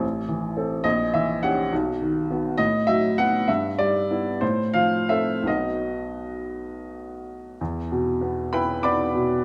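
A clear, woody upright piano sits up front from the first moment, alone in a romantic classical character piece in E minor, tuned to A4 = 442 Hz, whose passionate, brooding 6/8 lines move with free rubato at roughly 53-74 BPM across a span from A1 to D6, its chords passing through A minor, B and F over A before settling on E minor at 7.6 s, all bathed in a lush recital-hall reverb in this brief fragment cut from a longer work.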